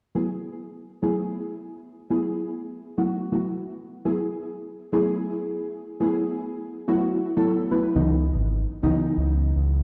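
A cavernous echo-chamber reverb, roughly 2.2 seconds long, fills this short, late-night deep house fragment, as if it were played through a big sound system in a bare room. At 123 BPM in 4/4 with a swung sixteenth-note feel, the piece sits in F# minor, tuned slightly sharp to A4 = 442 Hz. Deep, mellow chord stabs run from 0.1 s to the end, mixing triangle, sawtooth and sine tones into a soft, dark colour with ensemble chorus, delay, a filter sweep and decaying notes. They hold an F#m11 chord before moving to C#m11 at 8.0 s. At that same moment a gliding synth bass enters up front, its detuned sawtooth and triangle voice sustained with vibrato, portamento and a moving notch. The fragment stays in a single section that carries a smooth, nocturnal mood until it is cut off at 9.8 s.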